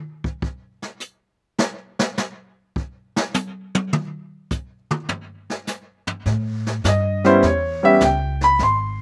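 The recording is dry and close, with little reverb and a sense of open air rather than a room around the players. This short cut from a longer swinging jazz piano trio piece has a moody swing feel. A brushed drum kit opens on its own at 0.2 seconds, the brushes on a medium-tuned snare sitting up front with a boomy kick, hi-hat and toms, its top end rolled off. The pizzicato upright bass enters at 6.3 seconds on an A7 chord, woody and steel-strung in the low register. The grand piano follows at 6.9 seconds, polished and present, taking the melody and standing out as the loudest voice of the trio.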